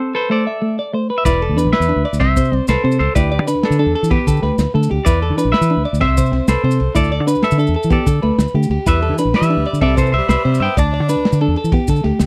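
Highlife guitar band music in a joyful mood, moving at 126 BPM in a straight 12/8 in G major, with a bright, hollow-body semi-hollow electric guitar carrying the melody over a second, warmer semi-hollow guitar's picked accompaniment and a twangy clean guitar playing arpeggios with slapback echo. At 1.3 s a round, foam-muted fingered bass enters up front alongside a gritty, saturated breakbeat kit of kick, snare and dark ride cymbal, plus grainy maracas sitting low in the mix. From 8.9 s an edgy, forceful tenor saxophone adds a scooped, vibrato-laden second line in the background, all captured in a dry, close 1970s-style studio sound.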